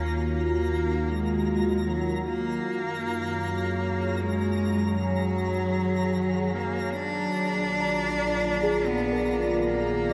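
Ambient music in 3/4 at 77 BPM, this melancholic, spacious piece is cut from a longer work and set in a vast, echoing space bathed in cathedral reverb. A bright, biting cello carries the melody with vibrato and delay, sounding intense yet distant, while an evolving wavetable pad holds mellow, detuned chords treated with chorus and a filter sweep. A deep, round sub bass anchors the low end and fades out, and a faint, string-like drone with a tense edge enters at 0.7 seconds. High above, a twinkling granular texture adds an octave-up shimmer, and at 7.8 seconds muted, felt-like synth keys arrive with soft, intimate arpeggios wrapped in chorus and delay. The harmony moves from Ebm to Gbmaj7 and then to Bb7.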